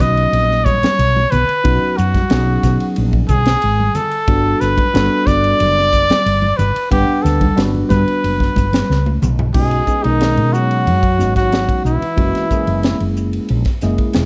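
A breathy, close-miked trumpet carries the melody up front with vibrato and scooped notes over a phaser-tinged tine electric piano, a round, woody fretless bass with analog chorus, and a crisp, polished drum kit with a punchy kick and high-tuned snare, setting a bright, slick electric jazz fusion groove at 91 BPM in B major. Hard-handed congas sit in the background from 0.7 seconds, and a drum fill at 8.9 seconds leads into a new passage where a dark trombone adds a second line from 9.6 seconds. The mix sits in a moderate large studio reverb as the chords move from Bmaj9 and Gmaj9 to B69 and F#9.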